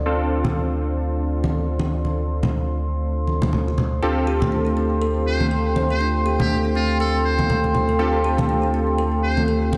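A muted trumpet, buzzy and brilliant with light vibrato and scooped notes, carries a forceful jazz-style solo melody from 5.3 seconds, sounding distant and roomy under a trail of delay. This hypnotic, driving afro house passage, cut from a longer piece, sits on a swung 16th-note groove while the harmony moves from Dm7 to Fadd9/D. A deep, round sine sub bass holds up front on D2, and a dark, moody sawtooth pad sustains chords with chorus and phaser. Detuned analog keys play decaying stabs through chorus, delay and a filter sweep, while hard-hand congas come in at 0.4 seconds, sounding acoustic and set in a large room. From 4.0 seconds a woody, ringing kalimba adds airy thumbnail-plucked arpeggios with delay, and a lush hall reverb soaks the mix in a dreamy haze.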